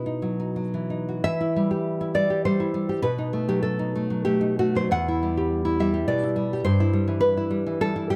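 A fingerpicked nylon-string guitar carries this short romantic passage for solo classical guitar, its tone warm and up front, with finger squeaks caught by the close, detailed microphones. The mood is passionate yet wistful, moving in a flowing three-beat metre with a free, rubato feel. The guitar spans from E2 up to F#5, and after a brief opening phrase, a new section begins at 1.3 seconds and carries through to 8.2 seconds. Light reverb gives the acoustic instrument a touch of space while keeping every detail of the playing intimate and clear. Cut from a longer piece, it ends mid-thought, leaving a sense of longing in the air.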